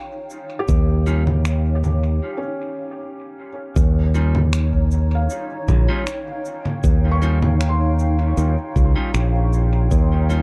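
A dark, warm mix set in a digital ambience carries this fragment of a longer ambient dub piece, moving at a relaxed 78 BPM in a straight 4/4 and set in Eb mixolydian, opening on an Eb9 chord. A cloudy, granular pad holds sustained chords from the very start, its slow attack, long release and built-in reverb giving a blurred, evolving backdrop. Electronic shaker, congas and finger snaps soon join, tape-toned and placed in a large room with dub echo. A soft, felt-muted upright piano plays intimate arpeggios through dub echo, and a twangy clean electric guitar adds bright picked stabs, also echoing, from 1.1 seconds. A growly fingered electric bass sits up front in the low end alongside a deep, overdriven electronic kick drum re-recorded in a small room, and a break from 2.2 to 3.8 seconds leads into the next section of this spacious, peaceful music.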